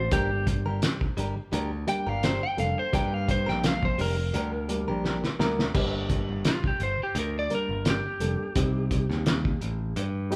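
A cloth-damped, thuddy drum kit with a fat snare, tight kick and dark, muffled cymbals sets a straight-eighth soul blues groove at 85 BPM in G minor, played live in one room with light reverb for a soulful, brooding feel. Picked electric bass sits up front with a modern, bright edge, while a barky, reedy electric piano with light overdrive holds down the accompaniment and a clean, direct-recorded electric guitar adds compressed stabs until 5.4 seconds. After a drum fill at 5.0 seconds, the lightly driven lead guitar, slightly broken-up and colored by analog delay, takes a solo from 5.7 seconds as the harmony moves from Gm to Cm near the close of this excerpt from a longer piece.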